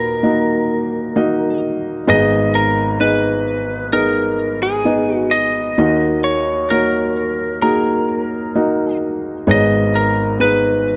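Pop, cut from a longer piece, moving at a slow 65 BPM in G# minor with a longing, heartbroken mood: a soft, intimate felt-muted upright piano with thin felt and a mellow tone carries the accompaniment up front, while an up-front, lightly driven electric lead guitar, picked and compressed with a slightly broken-up edge, sings the melody over chords shifting between D#m and G#m, the whole mix sitting in a wet plate reverb and a dark, warm production.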